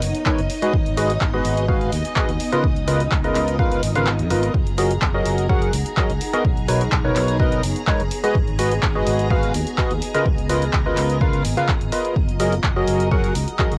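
Tape-warm and cassette-recorded, this euphoric piano house excerpt at 126 BPM in F# major sets a hollow, up-front organ stab riff with analog chorus and delay over a punchy electronic kick, analog drum machine handclaps and hi-hat, a growly, tube-saturated fingered electric bass, shimmering string-machine violins and an ethereal, airy pad with built-in reverb. The strings, pad, organ and bass pump under sidechain through a G#m7, C#13 and F#69 progression, while the kick briefly drops out at 4.1 seconds, all within a moderate booth-like ambience.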